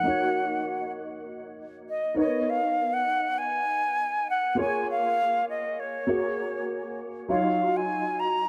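An airy silver flute, tongued and shaded with vibrato, carries the melody over a deep-bassed concert grand piano touched with ensemble chorus in this glossy, urban pop excerpt, set in a moderate plate reverb and moving through chords such as Cbmaj9 and Bbm7 before arriving on Ebm9 as a new section begins at 7.3 seconds.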